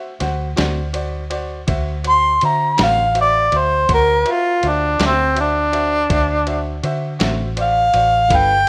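In a straight 12/8 at 54 BPM, this laid-back, soulful slow blues excerpt rests on a D7 chord, with a muffled, compressed, pitched-down sampler-style drum kit of thumpy kick, medium-tuned snare and ride cymbal beneath a dark, round, punchy foam-muted fingered electric bass, a clear baby grand piano with short sustain, and a clean picked electric guitar with tremolo sitting in the background. A mellow, up-front harmonica enters at 2.1 seconds to carry a jazz-style solo melody with light vibrato, scooped notes, a smooth top and overdrive, all set in digital ambience with the rough feel of a home demo mix.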